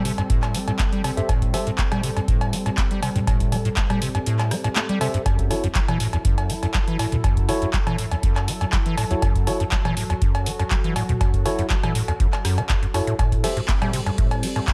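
Acid house at 121 BPM in a straight 4/4, this trippy, gritty excerpt runs just under 15 seconds, cut from a longer piece and set in a digital ambience. A rubbery, saturated acid bass drives a riff between E2 and A3, its square-wave tone resonant and dark with a fast, plucked filter attack, overdrive and subtle chorus, pumping against the sidechain. A booming analog drum machine supplies cowbell, handclaps, metallic hi-hats, ride cymbal, rim clicks and toms, while a dry, deep electronic kick anchors the beat before dropping out briefly from 4.3 to 5.3 seconds. A warbling, lo-fi pad of detuned sawtooth and triangle tones holds nostalgic sustained chords with slow attack and long release, colored by chorus, phaser and its own reverb and also pumping with the sidechain. A clean, direct tine electric piano adds stabs with tape echo, first in a short burst and then from 5.0 to 13.6 seconds, as the harmony moves from Am7 to F#m7 and returns to Am7 near the end.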